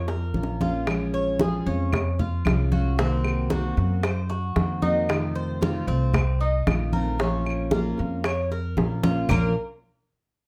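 Danceable and warm, this Cuban son and guajira fragment opens with a fleeting bright nylon-string guitar melody and a background flamenco guitar line that both stop by 0.6 seconds, leaving a metallic, double-strung Cuban tres playing arpeggios over woody pizzicato upright bass up front, a full-bodied picked jumbo steel-string acoustic guitar, tight high-tuned bongos and thick-skinned low congas, with distant claves joining at 0.9 seconds, all heard through wet studio reverb in a rough home-demo mix.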